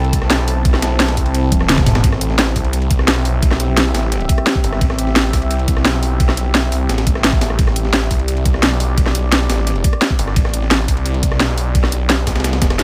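Mechanical and tense, this short cut of dark technical drum and bass runs at 173 BPM in A minor, its snarling distorted saw bass growling up front through tube saturation and sidechain pumping beneath a deep, moody ambient pad of detuned saws with a slow attack, chorus and built-in reverb. An overdriven, up-front drum kit with a cracking snare, bright hats, rim clicks and toms drives alongside a knocking electronic kick, while a very quiet, gritty breakbeat layer adds a high-tuned snare and ride cymbal. A drum fill lands at 1.5 seconds, and the mix stays dry with little reverb.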